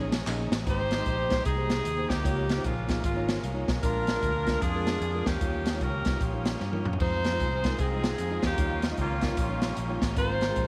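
A bright, tightly blended saxophone section carries the melody up front from the opening moment of this short, reverent yet jubilant gospel clip, supported by a mellow tine electric piano in the background, a round, amped fingered electric bass and a very quiet tonewheel organ holding sustained chords with key click, chorus vibrato and a light overdrive. The eighth notes swing moderately at a brisk 152 BPM in 4/4, and a polished big-band drum kit with a punchy kick and airy cymbals drives the groove just after the start. Tambourine and handclaps add a vintage, band-limited touch only briefly, from 0.1 to 0.6 seconds. A drum fill at 6.6 seconds leads into the entrance of a lush, distant string section at 7.0 seconds, bowing very quiet sustained chords beneath the horns. The harmony moves through rich jazz-gospel colours such as Abmaj7, Cm7, Bb7 and Eb9 before resolving on Ab69. Light reverb and a small room ambience give the whole a subtle sense of space, and the recording is cut from a longer piece.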